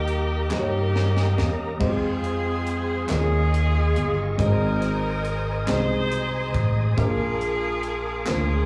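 An edgy saxophone section carries the melody up front with vibrato and slapback echo over a dark, slightly detuned upright piano, a reedy tonewheel organ holding sustained chords through a slow rotary speaker, and woody pizzicato upright bass, while a crisp fusion drum kit with a high-tuned snare plays a fill from 0.5 to 1.8 seconds and dry group handclaps join in the background in this slow, jubilant 6/8 gospel excerpt at 46 BPM in Ab major, heard live through a club PA with light reverb.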